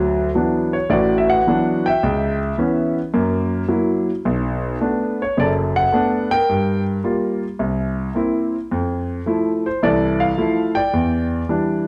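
Relaxed and sophisticated, this short solo jazz piece swings at an easy 108 BPM in 4/4, in D major, and is cut from a longer performance. A concert grand piano carries everything alone for the full 11.9 seconds, moving through a single section that opens on a D6/9 chord and passes through C#m7b5, F#7 and Bm7 before turning to Gm7, C7, Fmaj7 and Em7. The piano reaches from a deep bass down at F#1 up to G5, and its tone is intimate and natural, placed up front with the mechanical sound of the action clearly audible. A moderate large-studio reverb gives the instrument a sense of space around it. The swung eighth notes and rich harmony give the passage a relaxed, sophisticated character.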